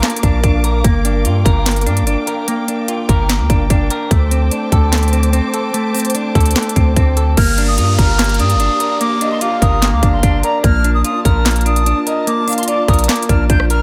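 An up-front trap kit with a hard-clipped kick, sharp snare and crisp hats drives this melancholic, eerie half-time hip hop excerpt in G minor at 147 BPM, joined from 0.2 seconds by a deep, long 808-style bass, underpinned by a clean semi-hollow electric guitar with spring reverb and a dark, lush bowed string section, before an airy, distant concert flute and a downlifter enter at 7.4 seconds and a breathy flute-like synth lead with chorus, tremolo and delay adds a second line from 8.8 seconds.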